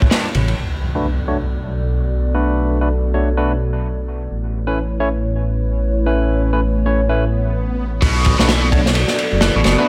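Swaggering and energetic, this breakbeat cut in B minor moves at 129 BPM with a swung sixteenth feel, built on a rumbling, detuned saw bass that runs nearly throughout and a barky, lightly overdriven tine electric piano whose stabs pass through a low-pass filter sweep and dub echo from 0.9 seconds. A moody analog pad holds sustained chords underneath with chorus and sidechain pumping, background congas tap briefly at the opening, and an impact and a swell mark the build between Aadd9 and Bm7. At 8.0 seconds the drop lands, bringing back the crunchy, saturated breakbeat kit of kick, snare and ride alongside a scooped, double-tracked overdriven guitar riff with dub echo, all set in a small room ambience.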